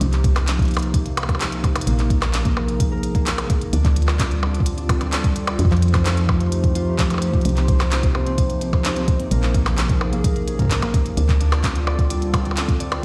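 Heard through a big sound system in a bare stone room, this melancholic, glitchy IDM fragment at 129 BPM carries light reverb and a digital ambience, moving through chords such as Cm7, Dm7, F7 and Bbm7. A hollow, airy pad with chorus and sidechain pumping holds sustained chords under a round, woody FM bass with tube saturation, while a soft electronic kick plays alongside a glitchy kit of handclaps, clicky hats and percussion blips that runs through digital delay, with a drum fill at 1.6 seconds. At 1.9 seconds a ringing, thumb-plucked concert harp enters with arpeggios through a delay, continuing to the end of this section cut from a longer piece.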